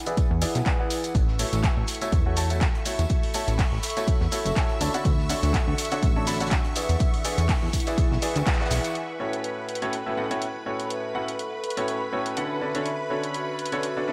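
A brilliant grand piano riff, pumping with the sidechain and shaded by a low-pass filter and analog delay, leads this joyful, feel-good piano house excerpt over a punchy, up-front electronic kick, a funky, plucky analog bass, a drum machine's handclaps, hi-hat and shaker, a very quiet tambourine, a muffled lo-fi vintage kit, shimmering string-machine violin chords and a warbly, nostalgic tape-like pad, set in a dreamy, reverb-soaked mix where kick, bass and tambourine fall away after a band accent at 8.5 seconds.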